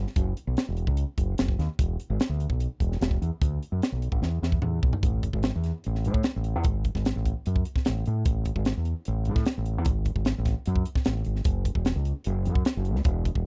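A straight 4/4 pulse at 149 BPM drives this playful, bright math rock and Midwest emo excerpt in A major, built from a growling, overdriven fingered electric bass and a crisp fusion drum kit, both sitting up front. The polished, airy kit features a high-tuned snare, a punchy kick, hi-hat and toms, and a drum fill from 4.2 to 5.0 seconds leads into a new section. The bass stays low between E1 and A2 with a direct, amped tone, all captured in a dry, close 1970s-style studio sound.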